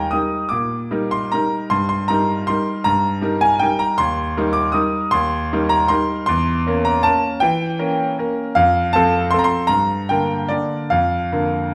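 Playful and graceful, this short cut from a longer classical piano waltz in 3/4 sways with a free rubato feel as a solo concert grand, brilliant and slightly worn with a deep bass and an up-front presence, moves from Eb through a diminished chord toward F and Gm, set in a reverberant recital hall that lends a natural, resonant bloom.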